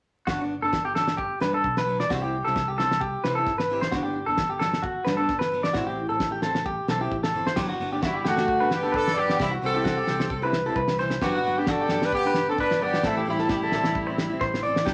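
A punchy horn section takes the melody up front from 8.0 seconds, its pop-style ensemble playing marked by vibrato and a smooth top. This joyful, danceable highlife guitar band excerpt moves in a lightly swung 4/4, cycling through Gmaj7, C and Am. A clean, twangy electric guitar plays compressed, scooped arpeggios up front throughout, while a picked steel-string acoustic guitar adds accompaniment with a concert tone and audible finger squeak. Underneath, a round, fingered electric bass plays alongside a damped 70s drum kit with a fat snare, tight kick, dark cymbals and a rolled-off top. Vinyl crackle and a wet studio reverb colour the sound.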